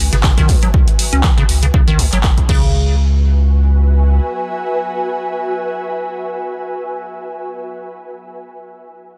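A swung sixteenth-note groove in 4/4 drives this hypnotic, gritty acid house fragment, built on an up-front, punchy electronic kick from 0.2 s, a roomy analog drum machine with crash, handclaps and hi-hat, and a very quiet, dark acoustic rock kit adding hi-hat, shaker and a fat snare for a brief moment. A deep, thick saturated sub bass and a squelchy, hollow square-wave acid riff with resonant filter plucks, cassette-tape grit, lush chorus and digital delay both pump under sidechain, with the sub bass stopping at 4.2 s. Over a C#m7 moving to C#7sus4, an ethereal, airy, detuned pad with ensemble chorus and reverb also pumps and fades, lingering until 7.5 s.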